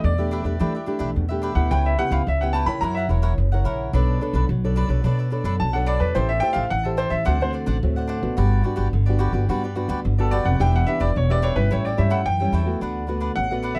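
A clear baby grand piano carries the melody from the first moment, joined by nylon-string guitar and upright bass, with a crisp, picked cavaquinho entering at 0.2 seconds. This joyful, playful samba moves at 108 BPM in a straight 4/4 feel in D major, and the piano takes a solo through 12.8 seconds, sounding intimate and natural with its action noise audible. The upright bass sits up front, its pizzicato tone woody and thumpy on steel strings, while the thumb-plucked guitar adds a classical accompaniment. The harmony travels from Em7 through F#7 and Bm9, then Gmaj7 and A7, before settling on D6 at 12.8 seconds. Close, detailed microphones and light reverb frame this short passage cut from a longer piece.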